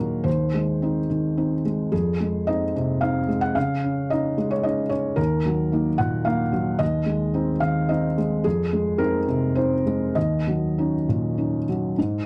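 A felt-muted upright piano plays alone in this melancholic, wistful neoclassical minimalist excerpt, its soft, dark, intimate tone sitting up front with audible action noise in a dry, close 1970s-style studio sound touched by light reverb, moving in a rubato 3/4 through chords such as Ab/Eb, Fm7, Dbadd9 and Ebm.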